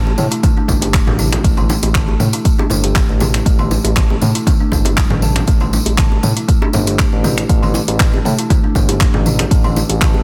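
A straight 4/4 groove at 119 BPM drives this afro house clip, cut from a longer piece and anchored by a deep, up-front electronic kick that enters at 0.4 seconds. Around it, a layered, overdriven deep house kit adds finger snaps, handclaps, hi-hat and toms, with soft clipping on the snare. Bright, band-limited congas played with hard hands and round, low-tuned bongos played with soft hands sit in the background, joined by a jingly, distant tambourine. A smooth, nasal synth bass built from detuned sawtooth, square and triangle waves holds sustained notes with vibrato and a fast attack, all under sidechain pumping. Over an A5 chord, a woody, hollow-box kalimba plays ringing, thumbnail-plucked arpeggios through a dub echo, also pumping, giving a warm, earthy mood within small room ambience and a dense, heavily limited modern master.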